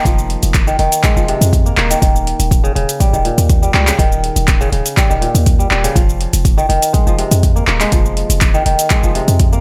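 A crisp, ringing, fingerpicked kora opens this driving afro house clip with arpeggios roughened by vintage 12-bit sampler grit, low-pass filtering, tape echo and sidechain pumping, joined almost at once by a deep, boomy 808-style bass that pumps along with it, a produced afro-pop kit of handclaps, metallic hi-hat and shaker, and a tape-toned electronic kick that sits loudest in the mix, both drum parts carrying studio reverb in a cut from a longer track.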